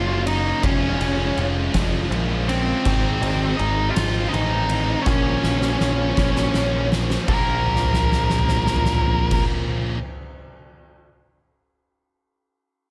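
Quiet-loud alternative rock in a slow 6/8 at 54 BPM in Bb minor, this brooding, cathartic passage is cut from a longer piece. Up front, a dark octave-fuzz lead guitar carries the melody while a growling, punchy bass with overdrive digs into the low end, and both stop at 9.4 seconds. Behind them, a bright, high-gain distorted guitar and a warm overdriven guitar, each double-tracked, play riffs through the full ten seconds. An oversized, low-tuned acoustic drum kit enters at 0.3 seconds, gritty and saturated in a big pumping room, with a fat snare, boomy kick, dark cymbals and toms. The chords move from Gb6 through Db/F and Ab to Bbm, and drum fills come from 5.1 to 7.3 seconds and again from 7.7 to 9.3 seconds as a new section arrives at 7.3 seconds, all set in light reverb and studio ambience.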